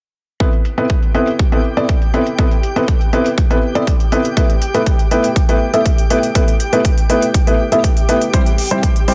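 Progressive house at 121 BPM in A minor, emotional and expansive, this short excerpt sets a felt-muted upright piano up front playing mellow, intimate stabs with audible action noise, shaped by sidechain pumping, a low-pass filter and tape echo over chords moving from Amadd9 to Esus4 and on to C. A punchy electronic kick and crisp, filtered hi-hats drive the straight 4/4 groove with small room ambience, and at 1.1 s a twinkling granular texture joins with a slow attack, octave-up shimmer and its own reverb, pumping behind the piano. The mix sits in light reverb with a dense, heavily limited modern master.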